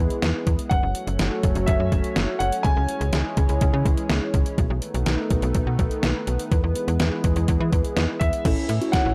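A dry, gritty hardware recording in digital ambience carries this melancholic, nocturnal synth-pop excerpt in F# minor at 124 BPM, where an overdriven, detuned 8-bit drum machine with thumpy kick and fat snare and a snappy, metallic slap-like FM bass sit up front beneath a thick, warbling unison pad with chorus, while a clear concert grand piano with short sustain and analog delay plays a high melody from 0.7 to 4.0 seconds and returns at 8.2 seconds, just before a mellow tine electric piano with lush chorus enters at 8.5 seconds on the move from E to A, after chords that move through F#m, C#m and B7.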